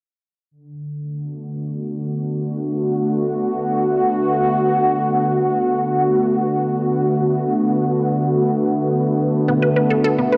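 A nasal, detuned sweeping pad with a wave-folded, evolving edge and a shimmer of chorus holds a sustained Bm7 from 0.5 seconds in this expansive, hypnotic piece of ambient, sequencer-driven space music, floating in free time in B minor with tuning at A4 = 441 Hz. At 9.5 seconds a squelchy, juicy blip pluck enters with a riff, its bright, resonant tone colored by phaser and analog delay. The whole short fragment, cut from a longer piece, is drenched in huge ambient reverb and carries the warbling pitch drift of worn cassette tape.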